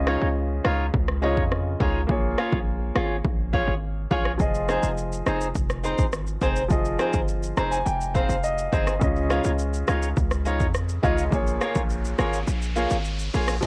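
Dancehall with a bouncy, sultry feel, cut from a longer piece, where a clear, polished baby grand piano pumps with sidechain ducking through cassette-tape colour and adds a fill at 7.3 s, a punchy, heavy 808-style bass hits up front, a dark, boxy fingerpicked acoustic guitar plays swung arpeggios with audible finger squeak, an electronic afro-pop kit with an overdriven deep kick, rim click, shaker and crash drives the groove until the kick drops out at 12.5 s, and an electronic riser and downlifter enter at 10.8 s over Dbadd9, Bbm7 and Fm7 chords in a lo-fi home-cassette sound with light digital ambience.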